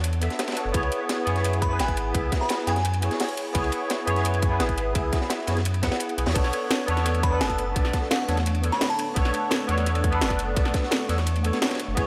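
Soulful and rolling, this liquid drum and bass cut pairs a deep, saturated sub bass with a barky, bright tine electric piano carrying ensemble chorus and dub echo over chords that move from Bm9 to C#m7 and back. Two layered drum kits drive it: a crunchy, dark breakbeat kit with a high-tuned snare and rolled-off top, and an overdriven electronic kit with a cracking snare and bright hats, joined at 0.7 seconds by a tight, overdriven electronic kick. A glassy, crystalline FM bell plays short melodic phrases with chorus and dub echo, and from 7.5 seconds an ethereal, airy pad with tremolo and sidechain pumping sits softly in the background of a moderate hall reverb.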